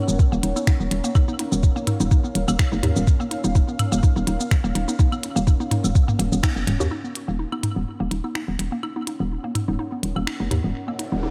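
A deep, moody sawtooth pad with chorus and sidechain pumping opens this hypnotic, sparse minimal techno excerpt in Eb minor at 125 BPM, joined at once by a hollow, bouncy FM bass up front, a woody, round mallet-like synth pluck riff and a clicky kit of finger snaps, hi-hat and shaker with tape echo. Overdriven electronic congas, woodblock, claves and toms add layered percussion, while a soft, tape-warm electronic kick drives the groove until it drops out at 6.5 seconds, just before the harmony settles onto Ebm7. A brief electronic riser enters at 10.9 seconds to close the echo-heavy mix.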